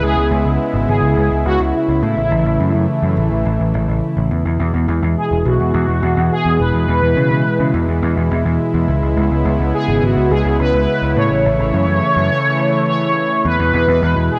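Nostalgic and dreamy, this synthwave excerpt in E major moves at a straight 105 BPM in 4/4, cycling through C#m7, A and E chords. A mellow, brassy synth lead with detuned sawtooth tone, filter sweep and vibrato carries the melody through chorus, phaser and digital delay, over a smooth, slow-attack analog pad holding sustained chords. Underneath, a dark, round, overdriven picked electric bass sits up front, all set in a moderate plate reverb with bright 1980s-style digital production.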